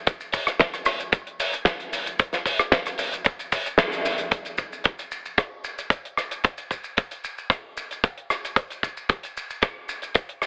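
A tight, dry acoustic kick drum sits up front from 0.1 s in this sleek, sensual nu-disco excerpt at 113 BPM in a straight 4/4. A damped 70s drum kit, also dry and up front, adds hi-hat, rim click, shaker and a fat snare, warm with a rolled-off top; a band accent lands at 3.8 s before the groove moves into a new section at 4.3 s. The recording carries a heavily compressed radio and telephone sound, set in a moderate plate reverb.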